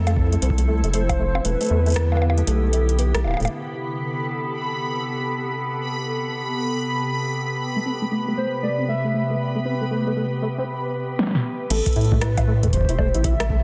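IDM in A minor at 117 BPM with a 16th-note swing, eerie and intricate, this fragment of a longer piece opens on a glassy FM pad with ensemble chorus and vintage 12-bit grit, a round square-and-sine analog bass, a rubbery acid arpeggio through tape echo, an overdriven electro drum machine with punchy snare, metallic filtered hats and bongos, and a deep overdriven kick, joined at 0.9 seconds by a warbling, nostalgic lead with tremolo and vibrato. At 3.5 seconds the beat and bass fall away, and the pad soon sits beneath a bright, bubbling sawtooth texture of random resonant filter steps, with the acid arpeggio and lead returning later. After a drum fill at 11.2 seconds, the kick and bass come back for the closing stretch, all set in a lush digital hall reverb and a dense, heavily limited master.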